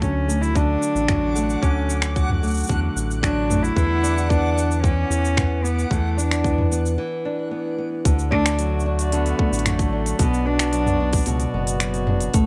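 A tight electronic kick drum drives a straight 4/4 pulse at 112 BPM alongside an organic electronic kit of crisp hi-hat, cabasa, finger snaps and toms, both tape-toned and re-recorded in a small room. This playful, pastoral piece of folktronica in D major is cut from a longer work. Up front, a round, deep analog bass blends sawtooth and sine with ring modulation, its fast attack giving way to dark, evolving sustain. A small fingerpicked nylon-string guitar plays arpeggios while a bowed cello carries the melody sul tasto, pure and floating with a soft attack; both parts carry a digital delay. From 0.8 s a reversed, granular texture drifts high above, dreamy and detuned with its own reverb, until a break at 7.0 s. At 8.0 s a reedy, nasal hand-pumped harmonium enters with breathing sustained chords as the harmony moves from D to Bm, all within a light reverb.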